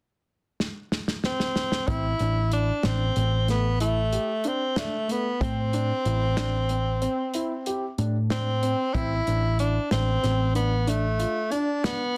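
Brooding and intricate, this excerpt of progressive instrumental band music moves in a straight 11/8 at 187 BPM in A minor, opening with a soul drum kit fill at 0.6 seconds before the bass and piano join at 1.9 seconds over Am and later D5/A. A breathy tenor saxophone carries the solo melody up front with light vibrato, subtone and scooped notes, while a round, amped hollow-body electric bass sits forward and a mellow concert grand piano plays arpeggios through a delay in the background. The drums bring a punchy kick and a medium-tuned snare with a rolled-off top in a small room, and the whole mix carries light reverb and a dense, heavily limited modern master.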